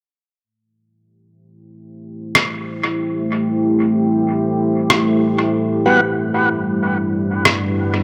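A deep, dark pad of detuned sawtooth and sine layers with a sub octave and a moving notch enters at about 2.2 seconds on a gradual fade-in, its slow attack and long release held in chorus and built-in reverb over Am7 moving to Gmaj7 at 5.5 seconds. This meditative, spacious ambient dub fragment in A dorian drifts in free time, with a muffled, compressed, pitched-down rim click sitting up front in a small room and trailing dub echo. At 5.9 seconds a smooth, clean tonewheel organ stab passes through a slow rotary speaker and dub echo, all set within a moderate spring reverb in an echo-heavy mix.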